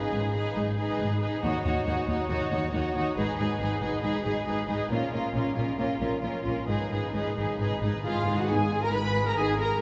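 Cinematic orchestral music with a swashbuckling, adventurous mood, cut from a longer piece and building over its first 8.5 seconds as lush bowed strings carry the melody, a second line and a bass foundation, the melody violins rich and distant, the cellos even, the double basses woody. Very quiet timpani struck with soft mallets add a round fill from 6.7 seconds, then an airy flute and a clear clarinet join on second lines around 8.0 seconds, with a dark French horn section holding chords in the background from 8.5 seconds. The whole ensemble sits in a wet cathedral reverb that gives the sound a long, hall-like tail.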